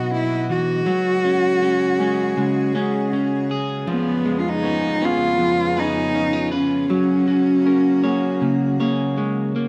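In a straight, unhurried 4/4, this heartfelt, nostalgic acoustic folk-pop ballad excerpt sets a dark, woody solo cello melody up front, bowed with vibrato until 9.1 seconds, over picked electric guitar at the edge of break-up. A bright Celtic harp rings out fingerpicked arpeggios in the background while a clear studio string section holds floating, soft-attack chords moving from B through F#sus2 and C#7/E# to F#add9. The close, dry 1970s-style studio sound carries only a light touch of reverb.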